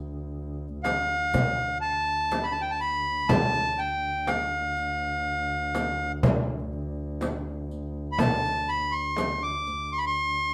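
Stately and warm, this Arabic maqam ensemble piece in D maqam rast moves at 122 BPM in a straight 10/8, opening on a dark, veiled bowed double bass drone on D2 before a reedy, up-front accordion takes the melody from 0.8 s, joined by a deep, distant frame drum, a crisp metal-shell darbuka and a dark-jingled, saturated riq tucked in the background, the band playing live together in one room with a wet studio reverb.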